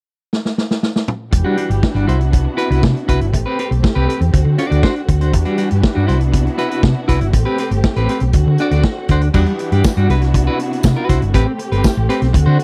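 A straight 4/4 disco groove at 120 BPM in E minor opens with a drum fill from the vintage kit at 0.3 seconds, its gritty, saturated sound with dark cymbals and a tight kick sitting up front, before a round, punchy hollow-body fingered bass, a clean picked electric guitar with tremolo, and a lush, woody string section placed at a distance all enter at 1.3 seconds. The danceable, glamorous excerpt cycles through Em9, Cmaj9#11, Am9 and D7 in a dry, close 1970s-style studio sound with small room ambience, and a jingly tambourine joins in the background at 9.8 seconds.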